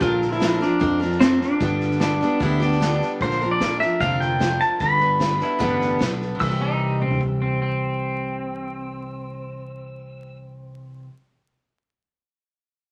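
A moderate studio reverb and a layer of vinyl crackle give this short honky-tonk and classic country excerpt a nostalgic, heartfelt glow, moving at 150 BPM in a straight 4/4 in C major. Up front, a twangy pedal steel guitar carries the melody from C4 to E6, played with fingerpicks and slide, its clean, compressed tone shaped by volume swells. Beneath it, a bright, full-bodied dreadnought acoustic guitar with fresh strings supplies picked accompaniment, while a round, direct fingered electric bass holds the low end. A distant, roomy drum kit played with bundle sticks adds a punchy kick, medium-tuned snare, toms and dark cymbals until it stops at 7.3 seconds. From 2.0 seconds an electric guitar through a small old amp joins with a slightly broken-up, picked second line, and the harmony moves from Bbadd9 to G twice before settling on C at 6.4 seconds.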